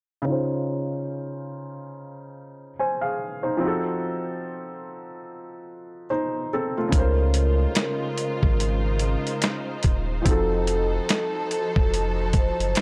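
Lo-fi hip hop with a dreamy, nostalgic mood and a swung 4/4 feel, this extract opens with a soft, muted felt upright piano playing alone, its intimate tone colored by cassette tape and a filter sweep as it moves between Dbmaj9 and F7b9. At 6.9 seconds a gritty, compressed sampler-style drum kit with a thumpy kick arrives alongside a deep, thick saturated sub bass, lush bowed strings holding woody sustained chords, and a metallic, ringing vibraphone melody with slow motor vibrato, while very quiet finger snaps join at 7.8 seconds. The drums and bass sit up front in a dry, gritty mix with light small-room reverb.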